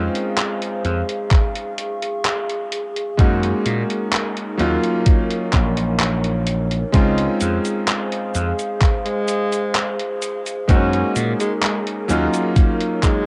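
A thumpy, tape-warmed electronic kick drum sits up front in this woozy, dreamy vaporwave excerpt, entering at 1.3 seconds beneath a gritty, overdriven slap bass with a bright, punchy bite and tube saturation. A clear electric grand piano with a clangy low end and a vintage character plays accompaniment through subtle chorus and analog delay, while a warbling, detuned, lo-fi pad holds dark, nostalgic chords with slow attacks, long releases, chorus and reverb. A detuned 8-bit drum machine adds cabasa, handclaps and hi-hat, both drum parts sounding sampler-like and re-recorded in a small room. At 9.1 seconds a breathy tenor saxophone takes the melody in a jazz style, with light vibrato, scooped notes and a smooth top, colored by cassette tape and tape echo. The harmony drifts through Dbmaj7, Gb69 and Ebm7 at a straight, unhurried pace, and the whole mix carries the hazy feel of a home cassette recording with light digital ambience.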